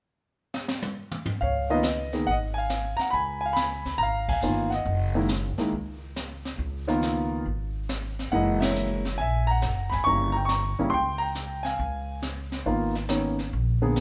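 Warm and relaxed, this brief excerpt of a jazz piano trio swings along at 139 BPM in 4/4, set in Db mixolydian. A brushed drum kit opens with a fill at 0.5 seconds, its dark cymbals, high-tuned snare and boomy kick sounding airy and polished in the studio room. At 1.4 seconds the grand piano takes the melody, natural and up front, while the pizzicato upright bass joins with a woody, thumpy gut-string tone. The harmony centres on a Db13 chord, moving through Gb5, Gb9 and a Gdim7 before settling back on Db13. The band hits accents together at 4.2 and 8.5 seconds, and a moderate large-studio reverb gives the live, one-room performance a natural sense of space.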